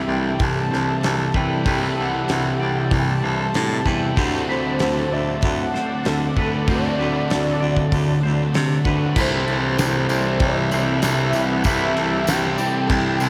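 A loose, straight 4/4 groove from a small-room indie drum kit with a fat snare and dark cymbals drives this blissful, hazy shoegaze and dream-pop excerpt, with a close-miked baritone saxophone up front carrying the bass line in a pop style, full of vibrato and scooped notes. Above it floats a breathy, flute-like synth lead coloured by chorus, phaser and delay, while a silky analog string pad and a twangy, clean electric guitar arpeggio sit very quietly beneath. Three guitar riffs churn in the background (a thick fuzz guitar and two overdriven semi-hollow guitars, one double-tracked and one trailing reverse reverb), a distant, jingly tambourine joins at 9.2 seconds, and a lush hall reverb soaks the mix.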